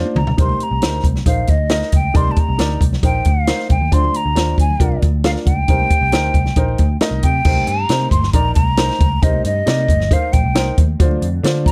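A straight, driving 4/4 pulse at 136 BPM opens with a quick drum fill from the dry, punchy cocktail kit, its high-tuned snare and dark cymbals sitting up front, while a round, foam-muted electric bass and faintly heard high-tuned congas push this passionate, uptempo 1960s-style soul cut in C minor. An airy, hollow jazz flute carries the melody in straight tone over a woody, slightly detuned upright piano whose action noise gives an intimate feel, moving from Cm7 through Dm7b5 and back. Light reverb surrounds the parts, and the passage shifts into a new section at 7.5 seconds, landing on Dm7 near 11.0 seconds.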